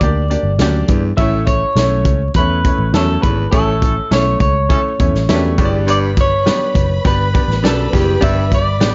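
An uptempo, joyful 1960s-style soul groove at 102 BPM opens with a slightly broken-up electric guitar through a small old amp carrying the melody over an up-front vintage drum kit with a punchy kick, a round, foam-muted picked bass and a woody, slightly detuned upright piano, as a smooth-topped baritone saxophone riff enters at 0.6 s, a distant horn section adds a background line at 3.8 s, and a lush, bowed string section follows at 5.9 s, all set in a dark, vinyl-crackled production with light reverb.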